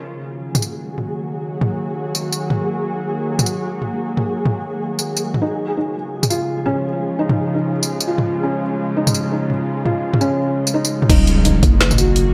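Dark and heavy, this half-time drum and bass fragment, cut from a longer piece, moves at 169 BPM in Eb minor with a swung sixteenth feel and a tuning slightly below standard pitch. A tense, string-like drone of detuned sustained chords sits up front from the opening, breathing with sidechain pumping and its own reverb, while a grainy, flickering texture hovers on a single high note behind it. The up-front electronic drum kit carries a woody snare, bright hi-hats, tambourine, toms and crashes, all pushed through overdrive and studio reverb. At 5.4 seconds, as the harmony shifts to Db, a felt-muted upright piano enters with soft, boxy arpeggios trailed by delay. The drop lands at 11.1 seconds, bringing a growling, buzzy 808-style bass with tube saturation, a knocking electronic kick that also carries overdrive, and a background impact, all in a moderate digital room ambience.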